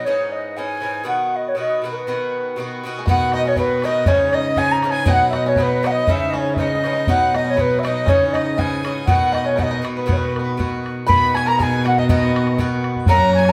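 A pure wooden flute with a crisp attack and vibrato carries the melody of this cheerful, lively Celtic polka in B major at 120 BPM, opening over a bright, metallic picked Irish bouzouki that moves between C#madd9 and B chords. Around 3 seconds the band fills in: a nasal, earthy fiddle and a twangy, fingerpicked banjo in the background add second lines, a reedy gut-string cello holds the bass, and a boomy, close bodhran marks the 2/4 pulse. The group plays live in one room with a wet stone-room reverb, and the excerpt is cut from a longer piece.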